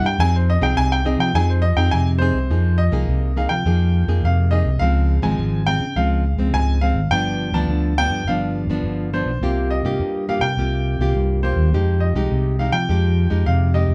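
A straight 4/4 pulse at 104 BPM carries this samba and choro piece in F minor, cut from a longer performance, with a yearning, bittersweet mood. A clear, intimate grand piano carries the melody in its upper register, taking a short solo over the first 2.5 seconds, its natural tone framed by audible action noise. A fingerpicked nylon-string guitar sits up front with a classical, acoustic character and occasional finger squeak, while a fingered electric bass, bright, amped and growly, anchors the low end as the most forward part. The harmony moves from Fm7 and Fm11 through Dbmaj7, G7 and C7sus4 before settling on Fm9 at 11.7 seconds. The band plays live in one room with moderate studio reverb, giving the ensemble a close, cohesive sound.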